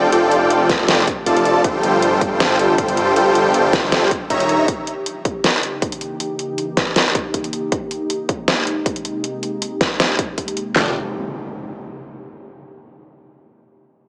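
Heard through a small speaker with a lush hall reverb, this bright future bass excerpt moves at 158 BPM in a swung half-time feel, as an airy, mellow pad with a filter sweep and sidechain pumping holds chords underneath. Huge, detuned supersaw chords with tape echo ride up front, pumping along with a thick, saturated saw bass, then both fall away at 4.7 s and return briefly at 10.8 s. Two layered electronic drum kits, one with hi-hat and snare and the other adding handclaps, a punchy kick and a deep snare, drive the groove up front before an electronic impact closes the passage at 10.9 s.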